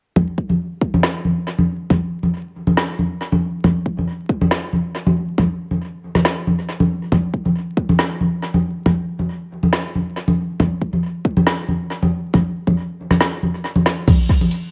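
Cavernous and meditative, this dubstep passage moves in a half-time feel with a light swing on the sixteenths. A deep, layered electronic kick drum sits up front from 0.2 seconds, shaped by a high-pass filter. Acoustic congas with a small-room tone play alongside it, trailed by dub echo. At 1.0 seconds a produced deep house drum kit joins, its woody snare, dark hi-hats and crash cymbal carried by tape echo. The echo-heavy mix carries light reverb over a bed of vinyl crackle, and a drum fill arrives at 13.9 seconds in this section cut from a longer piece.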